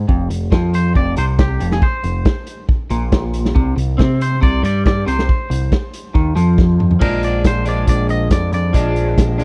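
A dry, close recording with a 1970s studio feel opens this bittersweet, restless excerpt of indie rock at 139 BPM in F dorian, where a growling, overdriven picked bass sits up front beside a bright, double-tracked guitar riff. A raw garage drum kit with a punchy kick, medium-tuned snare, hi-hat, crash and toms sounds gritty and saturated, while from 0.7 seconds a clean, twangy fingered lead guitar with slapback echo carries the melody. A drum fill at 6.6 seconds leads into a new section at 7.0 seconds.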